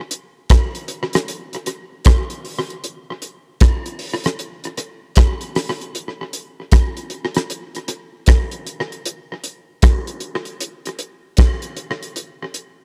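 A damped, up-front 1970s-style drum kit of hi-hat, tight kick drum and rim click, touched with tape echo, opens at 0.1 s and carries this serious, laid-back reggae excerpt alone until 12.8 s, at a relaxed 77 BPM in 4/4 with a 63% swing on the sixteenths, its rolled-off top and close, dry studio sound only lightly kissed by reverb.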